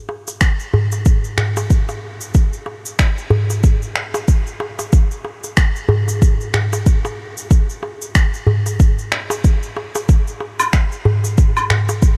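A close, dry darbuka with a clay-shell, natural-skin tone and hard hands opens this peaceful, earthy downtempo excerpt at 93 BPM, soon joined by a tape-warm electronic layer of shaker, finger snaps and woodblock with a small-room character and a deep, up-front electronic kick, all moving in 4/4 with a gentle sixteenth-note swing under light reverb.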